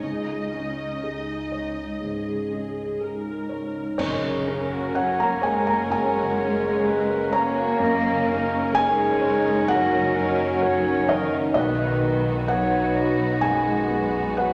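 A felt-muted upright piano sits up front, soft and intimate with its action noise audible, as violins carry a vibrato-rich melody over a portamento second violin line, a lush viola section, ringing thumb-plucked harp arpeggios, and a bass of dark cello and bowed double basses in this tender, uplifting cinematic film score, played rubato at 63 BPM in F# major. At 4.0 seconds a clear solo clarinet joins with a second line and a mellow French horn section adds sustained chords, while clash cymbals and concert bass drum give a brief accent, their part ending by 5.9 seconds. The harmony moves from C#sus2 to F#add9 and on to B, all bathed in a recital hall reverb.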